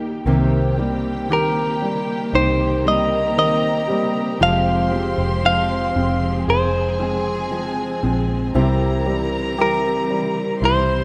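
This emotional, longing pop ballad excerpt moves at a slow 58 BPM, opening with a soft, felt-muted upright piano, a fingerpicked steel-string acoustic guitar playing full-bodied arpeggios, a round, foam-muted electric bass and a lush studio string section holding sustained chords in the background. A chamber violin section joins at 0.3 seconds with an intimate sul tasto second line, and at 1.3 seconds a bright, clean, direct-recorded electric guitar takes the melody up front. The harmony moves from Cm7 to Fmadd9 and settles on C, all in a moderate hall reverb with a rough home-demo mix.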